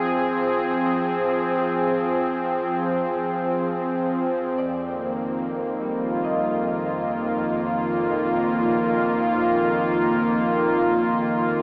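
This ambient piece floats in free time, a melancholic and spacious passage cut from a longer work. A smooth sawtooth pad with a soft attack sits up front, holding sustained chords that move from Fm to Ebmaj9/F at 4.5 seconds, its sound thickened by chorus and a shimmer reverb. Beneath it, a very quiet concert harp plays bright, ringing thumb-plucked arpeggios that carry an acoustic glow. At 2.9 seconds a very quiet bowed-like drone enters, a tense, string-like sawtooth tone built from detuned unison voices with a noise layer, vibrato, slow attack and long release. The whole mix is bathed in a huge, wet ambient reverb and filtered to a narrow AM radio sound, giving the chords a distant, worn haze.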